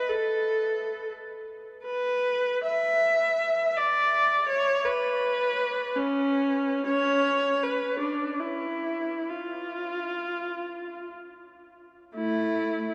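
A dark production steeped in a long, wet cathedral reverb, decaying over 5.5 seconds, frames this brief classical excerpt for unaccompanied viola in free time. The single bowed viola sounds rich and focused, coloured with vibrato, and sits up front while carrying a distant glow as it moves between A3 and E5. Serene and lyrical in mood, it plays alone from 0.0 to 12.9 seconds.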